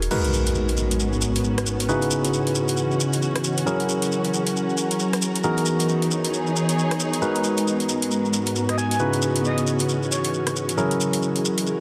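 A skippy two-step garage groove at 135 BPM in 4/4, with a 61% swing on the sixteenths, drives this moody UK garage excerpt in G# minor. The garage drum kit is electronic and layered, its metallic hats, rim click and crash cymbal pushed through overdrive with a touch of studio ambience, while close, dry maracas add a grainy acoustic shimmer. Up front, a barky tine electric piano plays bright, lightly overdriven stabs through a combo amp and tape echo, tracing a lush cycle of G#m9, C#m11, F#9 and Emaj9#11. Beneath it, an ethereal, airy pad holds sustained chords with ensemble chorus, phaser and a filter sweep, and a dark, woody studio string section adds bowed texture with vibrato, as an electronic impact marks the opening. At 8.7 seconds a breathy, flute-like synth lead enters with a soft attack, chorus and vibrato, voicing a brief melody through tape echo before ending at 10.3 seconds. 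The mix sits in a moderate digital room reverb and is densely limited in a modern master.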